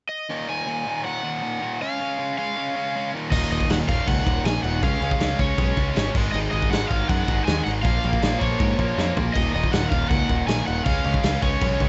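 Urgent and angry, this short punk rock cut from a longer piece drives forward in a straight 4/4 feel. An overdriven lead guitar carries the melody in a high register from the opening moment, while a sludgy, double-tracked guitar starts its riff just after, picked and bright. At 3.3 seconds the full band crashes in: a second distorted guitar adds another riff from further back, a growling picked bass with an overdriven, amped bite digs into the low end, and a loose drum kit sits up front with a punchy kick, medium-tuned snare, crashes, splashes and toms. The kit sounds gritty and saturated, with a rolled-off top, and it tears through a fill near 9.0 seconds before the chords cycle back around. The dry room carries little reverb, and the overall sound stays dark at the top.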